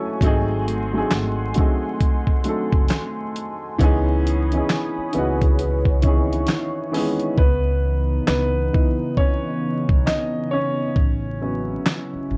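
Reflective and nostalgic, this lo-fi hip hop excerpt moves at an unhurried 67 BPM in C# minor, with a swung 16th-note feel. A woody upright piano sits up front as the main accompaniment, framed by a warbling, detuned tape-like pad with a slow attack and long release. A mellow soft-mallet vibraphone with fast motor vibrato rings in the background as a second line, and a growly pizzicato upright bass anchors the low end. A gritty, compressed sampler-style drum kit with a thumpy kick, fat snare, hi-hat and handclaps pushes forward in the mix, all over a bed of vinyl crackle. The harmony drifts from G#7b9 to C#m9 and on to A6, and at 7.4 seconds the vibraphone has dropped out and the hi-hats fall silent as the piano takes a solo.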